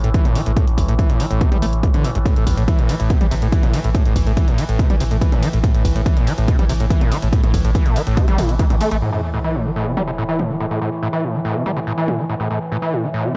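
Dark and industrial, this driving peak-time techno excerpt in A minor pounds along at 142 BPM with an up-front, heavy layered kick that drops out at 8.7 seconds. A screaming, squelchy sawtooth acid riff with resonant filter sweeps, distortion, analog chorus, tape echo and sidechain pumping rides above a saturated triangle sub bass in the background. An overtone-sweeping drone with slow attack and built-in reverb hangs in the mix, while a drum kit of hi-hat, ride and toms, re-recorded in a large room, fills the texture. All of it sits in a dry, gritty cassette-tape sound, with an electronic sub drop striking at 9.0 seconds as the bass falls away.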